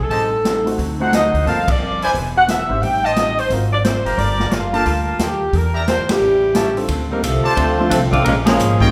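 A swinging 4/4 pulse at 177 BPM drives this sultry, brassy big band piece in G minor, with a punchy kick, snare, hi-hat and ride from the drum kit, a woody pizzicato upright bass, a clean, compressed hollow-body archtop guitar in the background, and an intimate baby grand piano whose action noise is audible. Up front, a clear saxophone section carries the melody with light vibrato, while the trumpet section punctuates with ensemble stabs and the band hits accents. A warm, soft-attack trombone section slips in as a distant second line at 6.1 seconds, and the band sits in a wet recital-hall reverb over altered jazz chords.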